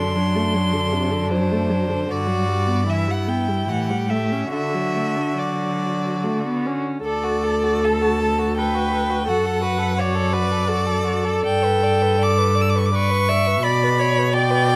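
In a flexible, rubato triple metre, this slow, romantic string quartet movement unfolds with a yearning, solemn mood, cut from a longer piece and heard in a dry, closely miked and detailed sound. A clear, focused first violin sings the melody up front with vibrato, while a second violin carries a smooth, rich inner line, the viola adds expressive accompaniment with portamento, and a close, even cello anchors the bass beneath them all. The harmony moves through seventh chords into a settled resolution before a second section begins at 7.1 seconds.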